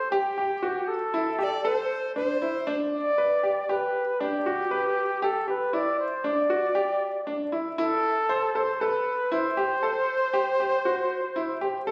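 A smooth-topped flugelhorn leads up front with soft attack and classical vibrato in this shimmering, playful contemporary chamber piece, moving at 117 BPM in 5/4 over Am, G and a return to Am. Beneath it, a bright, worn baby grand piano with audible action noise and short sustain plays intimate arpeggios, while a breathy, reedy bass recorder with woody chiff adds a brief second line from 1.4 to 2.8 seconds. The sound, captured by phone in the room, sits in a moderate scoring-stage reverb with compression, and the passage is cut from a longer work.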